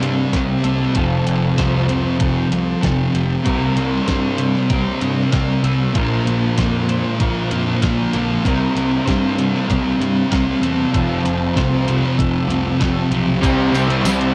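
Wistful and dreamy, this shoegaze-leaning dream pop rock cut moves at 96 BPM in C mixolydian, with a dark, up-front fuzz guitar riff over a raw overdriven garage guitar with reverse reverb, a warm compressed twelve-string playing chorus-and-tape-echo arpeggios, a growling overdriven bass and a thumpy, fat-snared 12-bit drum machine with cassette grit, before a bright double-tracked semi-hollow guitar and a jingly tambourine join at 13.4 seconds as the C7, F and Bbmaj7 changes resolve to C on a light-reverb home cassette recording.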